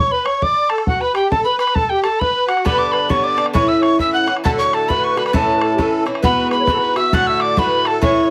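A swung two-beat Celtic polka, bright and rollicking, in which an airy, chiffy tin whistle with vibrato carries the melody up front over a reedy, shimmering musette accordion second line and a boomy, open bodhran, until a metallic, picked Irish bouzouki joins at 2.6 seconds with double-string accompaniment, all in a moderate studio ambience in this short section from a longer piece.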